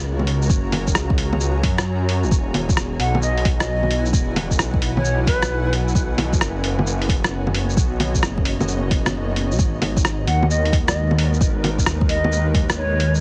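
Future garage at 132 BPM in G# minor, this ghostly, wistful piece rides a swung 16th-note groove: a muffled, overdriven sampler-style kit of bongos, hi-hat, rim click and shaker sits up front beside a deep, layered electronic kick, while a menacing detuned saw bass pumps and swells underneath. A blurred, granular cloud pad holds mellow sustained chords moving from F#add9 through E and B to G#m7, pumping gently inside its own reverb. A hollow, airy concert flute with vibrato enters at 3.0 seconds and returns at 10.3 seconds, roughened by 12-bit sampler grit and tape echo, all heard through a heavily compressed, radio-like sound with vinyl crackle.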